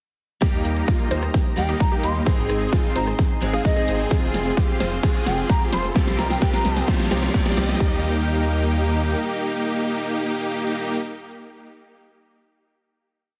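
Festival progressive house in Eb major at 130 BPM, anthemic and triumphant, builds from 0.4 seconds: a punchy four-on-the-floor electronic kick and a big-room kit with a huge snare, hats, rim and crash drive a drum fill, while a filter sweep moves across the bright supersaw chord riff, a detuned saw bass plays off-beat, and a very quiet riser sits beneath. Sidechain pumping runs through the supersaw, the bass, the airy background pad and the dark, fingerpicked steel-string acoustic guitar, and a faint detuned pluck doubles the chords. A breathy, mellow concert flute sings short answering vibrato phrases with tape echo from 1.6 seconds, before the Eb, Ab, Fm, Cm7 progression resolves onto a final Eb chord at 7.8 seconds, all under a heavily compressed, radio-like finish.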